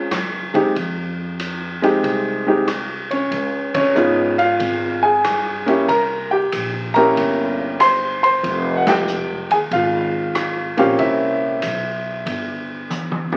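A warm, up-front grand piano carries the melody over growly, woody pizzicato upright bass from the start, joined at 0.1 s by a natural, big-room drum kit with a boomy kick, and this cool, moody swinging jazz trio moves through minor-key chords with band accents and a closing drum fill at 12.9 s, all heard through moderate large-studio reverb and the crackle of a very old 78 rpm record in this brief cut from a longer piece.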